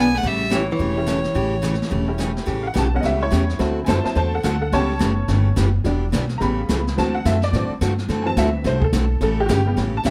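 A clear, biting fiddle with light vibrato and a warm, hollow-body archtop guitar open this down-home, swinging western swing excerpt at 214 BPM in A mixolydian, dropping out by 2.2 seconds as a jangly, detuned honky-tonk upright piano takes a solo from 2.5 seconds over a bright dreadnought acoustic guitar, a woody, growly pizzicato upright bass up front and a distant, roomy brushed drum kit with a boomy kick, all in a moderate club reverb.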